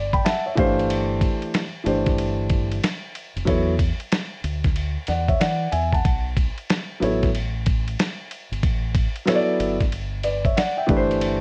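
A dark, mellow grand piano with audible action noise sits up front and opens with a brief fill in this nocturnal, cool jazz-hop excerpt, carried by suspended ninth chords over a round, punchy fingered electric bass and a gritty, compressed sampler-style drum kit with thumpy kick, hi-hat, ride and snare, all swung and bathed in light reverb and the warbling pitch drift of worn cassette tape.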